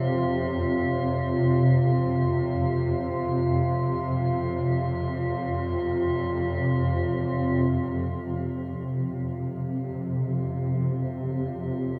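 A swarming, detuned sine drone sits up front across the full 12 seconds, its granular, slowly evolving unison mass holding low between F2 and C3 and setting a vast, ominous dark ambient mood in this fragment of a longer piece. Above it, a quieter FM drone on F4 adds an eerie, inharmonic, metallic warble with a mellow vintage tint, colored by chorus and shimmer reverb. Both parts bloom slowly and linger in an enormous, dark reverberant space around an F5 harmony, with the music moving into a new section at 7.7 seconds.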